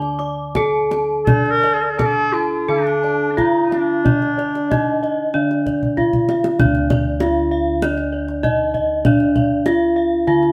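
Stately and hypnotic, this short Javanese gamelan passage moves in a straight 4/4 at 83-98 BPM, tuned to A4 = 436 Hz. A bronze metallophone struck with a horn mallet carries the melody up front with a ringing, metallic voice, while a higher metallophone spins arpeggios whose paired tuning gives off shimmering beats. Bossed gongs played with padded beaters add soft, mellow arpeggios above, and lower bossed gongs hold the bass with a round, beating tone in the background. The kendang sits close and tight, struck with hard hands, and a drum fill at 5.8 seconds leads the music into a new section. Between 1.2 and 5.5 seconds a warm, distant clarinet in classical style adds a solo second line. The ensemble plays live in a boxy stone room, whose moderate reverb lends the bronze a warm ring.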